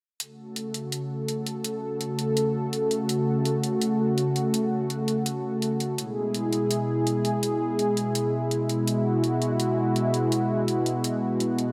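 A straight 4/4 pulse at 83 BPM comes from an overdriven, layered electronic hi-hat re-recorded in a small room, under a smooth, detuned sawtooth analog pad with slow attack, chorus and ring modulation that holds sustained chords up front, moving from F# minor to E at 6.0 seconds in this nostalgic, moody synthwave excerpt washed in a wet scoring-stage reverb.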